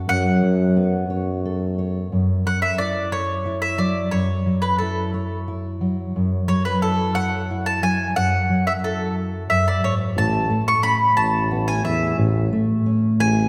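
A woody, double-strung mandolin carries the melody and takes a solo from 2.1 seconds in this melancholic, wistful acoustic folk piece in F# minor and a slow 6/8 at 60 BPM, over a dark, full-bodied fingerpicked steel-string guitar with audible finger squeak, while a warm, classical-style tuba plays the bass at the start, drops out at 2.1 seconds and returns at 10.2 seconds as the harmony moves from F#m7 to A, all set in the wet reverb of a church or concert hall.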